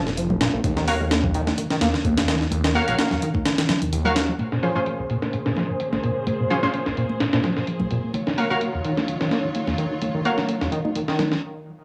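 Swaggering and raw, this breakbeat excerpt struts at 128 BPM in Bb minor, with a light swing on the sixteenths and chords moving between Bbm9 and Ebm9. A gritty, compressed sampler-style drum kit sits up front, its thumpy kick, high-tuned snare and hi-hats all dulled by low-pass filtering, while soft-handed congas play close and dry in the background. Bold, punchy orchestra-hit-like synth stabs ring out brightly from the start, colored by built-in reverb and analog delay, alongside a rubbery, resonant acid bass riff that carries lush chorus and its own analog delay. For the first few seconds a swirling, thick phased saw bass also rumbles underneath, stopping at 4.3 seconds just as a woody, bowed studio string section enters at 4.4 seconds with vibrato-rich sustained chords, pumping under sidechain compression as a filter sweep moves over them. The dry, saturated hardware sound, with a cassette-tape grit and small-room ambience, gives the whole track a rough edge before a sudden stop at 11.4 seconds.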